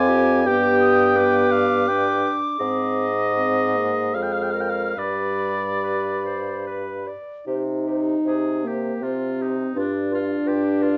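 Elegiac and yearning, this slow romantic movement for wind quintet unfolds in a flexible, rubato triple metre and is cut from a longer piece. A hollow, pure-toned silver concert flute carries the melody with a straight tone and soft attack. Beneath it, an up-front oboe with light vibrato and a smooth top sings a second line, while a clear clarinet sits in the background as accompaniment alongside a dark French horn. A mellow bassoon, also touched with light vibrato, anchors the bass with a roomy presence. The ensemble sits in a moderate large studio reverb with a warm production, and the harmony turns toward C minor at 7.5 seconds as a new section begins.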